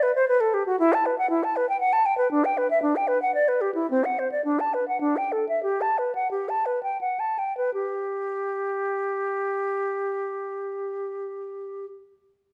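Flowing and serene, this short excerpt from a baroque-style classical fantasia features a concert flute playing alone in a free, rubato 3/4, slowing between 3.1 and 7.7 seconds before a new section begins. The flute sits up front with a pure, straight tone and crisp attack, moving between low and upper registers. A moderate recital-hall reverb and a dark production surround it.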